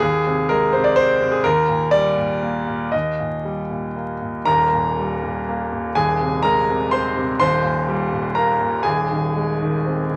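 Vinyl crackle and a moderate studio ambience frame a clear, intimate grand piano, placed up front with audible action noise and long sustain. This short excerpt of peaceful, hopeful neoclassical minimalism is in Eb major at 123 BPM in a rubato 3/4. The solo piano spans Eb1 to C6 over chords that return to Abadd9 above an Eb bass, and a new passage begins at 4.5 seconds.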